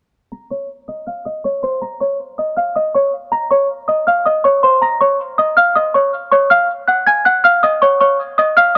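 Set at 160 BPM in 4/4 with a half-time feel, this short hip hop fragment, cut from a longer piece, carries a dark, hard-hitting mood in Bb minor. The only part is a small celesta playing the melody from 0.3 to 8.8 seconds, ranging from C5 up to Bb6. Its bell-like tone is delicate and sweet yet shadowed, with the smooth strike of hard felt hammers placed up front in the mix. A low-pass filter shapes the celesta, and a filter sweep runs across it for its whole length. The harmony rests on Bbm before moving to Dbsus2 at 6.3 seconds. The sound is dry and gritty, touched by light, small-room reverb.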